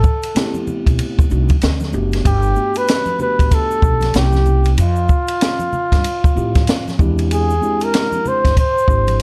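A swung sixteenth-note groove in 4/4 drives this short jazz-hop excerpt, anchored by an open acoustic drum kit placed up front, with dark cymbals, a high-tuned snare and a boomy kick across hi-hat and ride. A tube shaker and congas, close and dry with hard hands, sit in the background. A mellow tine electric piano enters at 0.3 seconds, clean and direct, moving through rich chords such as Am9, Gmaj9, C7b9, Fmaj9 and E7alt, and a pizzicato upright bass joins at 0.9 seconds with a woody, growly tone. Over this, a breathy solo flugelhorn carries the melody close-miked and up front, its scooped notes trailed by a slapback echo. Light reverb lends the studio room a natural feel, and the mood stays cool and warm throughout.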